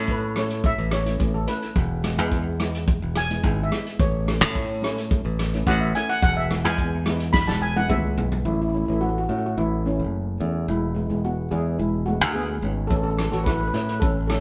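Opening on a soft, close-miked steel pan accompaniment and a bright, growly fingered electric bass, this carefree, sunny calypso excerpt brings in a mellow, airy lead steel pan soloing from the background over a muffled, lo-fi vintage drum kit with a tight kick, which plays a fill before falling silent at 8.4 s and returning at 12.9 s, as the chords move between A, E and E7 and the band shares a moderate stone-room reverb.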